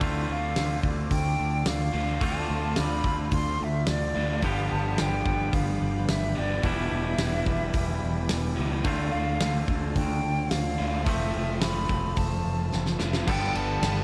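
Wistful and dreamy, this shoegaze-tinged dream pop rock excerpt pairs a breathy, bright concert flute melody with slapback echo, entering at 0.3 seconds, over twangy clean guitar riffs with reverse reverb, a dark overdriven semi-hollow guitar in the background, a growling overdriven fingered bass, a fat-snared big rock drum kit up front that plays a fill at 12.7 seconds, and a pure, organ-like pad of sustained chords with ensemble chorus moving from Dm7 through G7, Em7, a return to Dm7 and Fmaj7 to G9.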